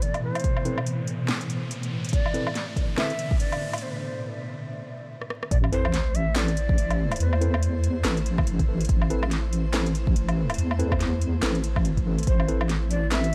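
Vinyl crackle and a light reverb frame this dark, brooding excerpt of deep dubstep, set in A minor at 142 BPM with a swung, half-time feel. A granular cloud pad holds blurred, evolving chords throughout, while a breathy bamboo shakuhachi carries the melody with vibrato, chiff and dub echo. A clean tine electric piano adds stabs in the background, also treated with dub echo. A garage kit of cracking snare, metallic hats, handclaps, rim click and woodblock runs alongside a deep, tape-toned electronic kick, and an electronic riser and sub drop shape the build-up and break. At 5.5 seconds the drop lands with an impact and brings in an up-front, chorused wobble bass that is deep, detuned and compressed, while the shakuhachi falls silent at 8.0 seconds before a brief return near the end.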